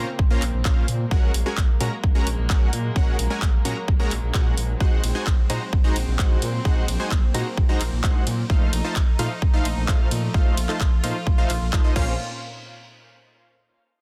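Festival progressive house at 130 BPM in a straight 4/4, this euphoric, anthemic excerpt is cut from a longer piece and sits entirely in a drop that runs from the start to 12.2 seconds. A punchy, overdriven electronic kick sits up front, entering at 0.2 seconds, joined at 0.4 seconds by a layered big-room dance kit of handclaps, hi-hat, ride and crash cymbals, also overdriven but set further back. Underneath, a thick, lush detuned saw bass with chorus and tube saturation holds the low end, while a supersaw stab with a filter pluck plays the riff through cassette tape coloring and tape echo. A dark, bowed string section floats in the background on soft-attack sustained chords, and the bass, stab and strings all pump against the sidechain. The harmony moves from Bbmadd9 through Gbadd9/Bb, Ab7/Bb and F7/Bb over a Bb pedal before everything drops out at 12.2 seconds, and the dry, dense, heavily limited master keeps the sound loud and close.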